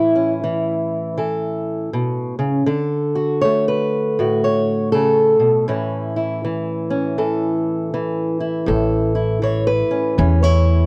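A dry, close recording with a light touch of reverb gives this short excerpt the intimate feel of a 1970s studio session, with both instruments sitting up front. It is soulful, gritty acoustic country blues at an unhurried pace, played with a lilting swing. An old ladder-braced acoustic guitar, fingerpicked on aged strings, carries the melody alone from the start, its tone dark, boxy and woody as it ranges from low in the bass register up into its upper reaches. The harmony moves from A to D at 2.7 seconds and back to A at 5.7 seconds. At 8.7 seconds an upright bass joins, plucked on gut strings with a thumpy, warm and woody low end that fills out the bottom for the closing moments.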